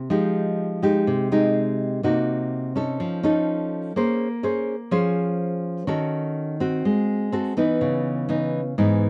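A sophisticated, relaxed bossa nova fragment at 125 BPM, where a full-bodied, up-front classical nylon-string guitar plays alone, fingerpicked with audible finger squeak through lush changes such as Fm9, F7b13, Bbm9 and Ab7b9, all set in light reverb and the worn, warbling pitch drift of old cassette tape.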